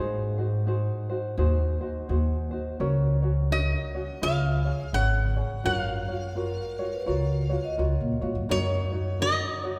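This relaxed, sunny Hawaiian fragment in F# major opens on a brief touch of dark, ringing vibraphone (medium mallets, motor off) over a light, thumb-plucked tenor ukulele and an up-front, woody upright bass played pizzicato on gut strings, at a swung 84 BPM in 4/4 tuned to A4 = 444 Hz. At 3.5 seconds a nasal, metallic lap resonator guitar takes the melody up front with slide and fingerpicks, and the smooth vibraphone returns in the background at 6.4 seconds as a second line. The chords move from G#7 through C#7 to F#maj7 and settle on F#6, all bathed in a wet church reverb with a 2.6-second decay in this short passage cut from a longer piece.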